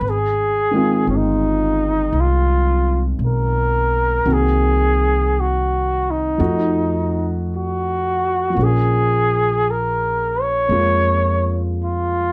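Intimate and smoky, this slow swung jazz ballad fragment at 56 BPM sets a breathy, mellow flugelhorn melody with vibrato, scooped notes and a slapback echo over a warm baby grand piano with audible action noise and long sustain, and a woody pizzicato upright bass, all moving through Ab6, Cm7b5, F7b9 and Bbm7 in a dry, close 1970s-style studio sound.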